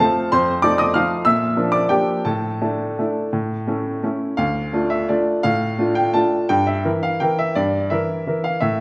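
A clear upright piano carries this short classical waltz alone, its woody, vintage tone sitting up front with a short sustain. The mood is bittersweet and nostalgic, set in D minor and 3/4 time, with a rubato feel that lets the tempo drift between 161 and 202 BPM. The piano spans a range from D2 to F6, and the harmony moves through F7, Bb, Asus4 and A before settling on D minor at 4.4 seconds and shifting to Edim/G at 6.5 seconds. A recital hall reverb with a 1.7-second decay surrounds the instrument with a wet glow. Lasting just under nine seconds, this fragment is cut from a longer piece.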